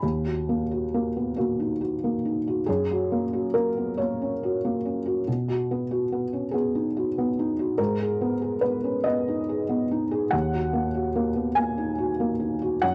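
A felt-muted upright piano plays alone from the first moment, its thick felt giving a dark, mellow tone with short sustain and audible action noise, placed up front in a booth with moderate ambience on a home cassette recording. This wistful, intimate fragment of neoclassical minimalist piano moves at a slow, rubato 47 BPM in 6/8, drifting through Eb minor, Gb, B and Ab minor before settling back on Eb minor by 10.3 seconds. It is cut from a longer piece and lasts just under 13 seconds.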